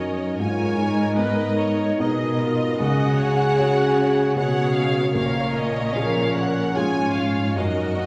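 Mellow French horns hold sustained chords in this bittersweet, moving cinematic orchestral piece, played rubato in 3/4 at 76 BPM, while an intense, distant violin section sings the lush vibrato melody over focused violas, a warm baby grand piano and ringing fingerpicked concert harp arpeggios tucked in the background, and expressive, soft-attack cellos carry the bass through G#madd9, C#sus4 and A#m7, the whole ensemble bathed in a wet recital-hall reverb.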